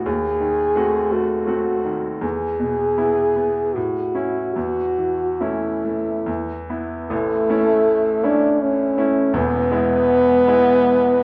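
A worn, warbling old cassette tape carries this short excerpt, its pitch drifting while a wet recital hall reverb of about 1.5 seconds surrounds the players. It is a serene, lyrical romantic classical duo for French horn and grand piano in A major and 3/4 time, moving with a free rubato between 68 and 88 BPM. The French horn sings the melody up front from A3 to G#4, its tone warm and roomy with a light vibrato and a slightly distant, solo character. The grand piano accompanies throughout, bright and brilliant with a natural touch, reaching from a deep E1 up to F#4. The harmony opens on a D#dim7 and settles through E and A chords, with a new phrase arriving at 7.1 seconds on A before closing on E as the fragment breaks off at 11.2 seconds.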